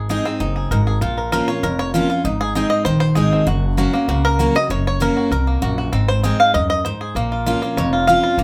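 A straight, driving 4/4 pulse carries this haunting minor-key bluegrass fragment, cut from a longer piece, as the chords move between Ab, Bbm and Gb. The fingerpicked five-string banjo takes the melody as a twangy, percussive solo up front throughout, beside a bright, full-bodied picked dreadnought guitar. Beneath them a woody, growly pizzicato upright bass sits a little lower, with the band sounding live together in a small room with a short reverb.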